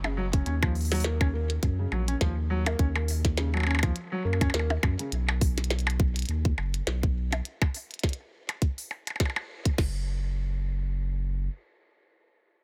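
Melancholic and cerebral, this short excerpt from a longer IDM piece moves at 103 BPM in 4/4 with a gentle sixteenth-note swing. A felt-muted upright piano opens with soft, mellow arpeggios in an intimate, warm tone shaped by thin felt, touched with delay, over a D#m7 chord before dropping out at 5.1 seconds, where the harmony falls away. Beneath it, a deep, round sine sub bass holds sustained notes with a fast attack, sitting up front until 11.5 seconds. Two glitchy electronic drum kits carry the rhythm: one brings clicky hi-hats, percussion blips and a tiny snare through tape echo, while the other, louder, supplies a tight kick, crash cymbal and its own small snare with a tape-warm, produced character. The band lands an accent at 9.2 seconds just before the drums cut out, leaving the bass alone in a digital ambience for the closing moments.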